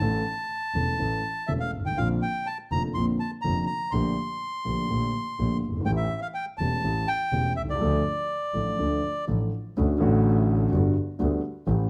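A reedy bandoneon sings the melody up front in this melancholic, tense tango in D minor, played with a rubato feel around 123 BPM, before falling silent at 9.2 s. Beneath it, a dark, mellow grand piano with a vintage character and long sustain carries the harmony, while a single bowed double bass adds a biting, intense line with vibrato. Moderate reverb from a large studio surrounds this passage from a longer piece, and at 9.8 s the harmony moves from Dm to Dmaj7 and then Gmaj7.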